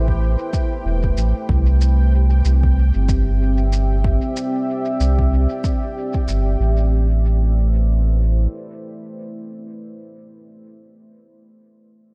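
A dark, moody pad of detuned sawtooth voices with a sub octave spreads across this hazy, meditative ambient dub fragment at 94 BPM in A minor. Its slow attack and long release are blurred by chorus and reverb. Beneath it, a round, soft sub bass sits up front with tube saturation and a filter sweep, while a bright, resonant texture bubbles through random filter steps higher up. An overdriven, layered electronic kick and a muffled, pitched-down shaker carrying dub echo give the 4/4 groove a gentle 16th-note swing as the chords move from Am7 to C. The drums fall away and the bubbling texture ends at 6.6 seconds, as the pad and bass settle on A minor; the bass drops out at 8.5 seconds and the pad lingers until 9.9 seconds, all within a dark, warm production and a digital ambience.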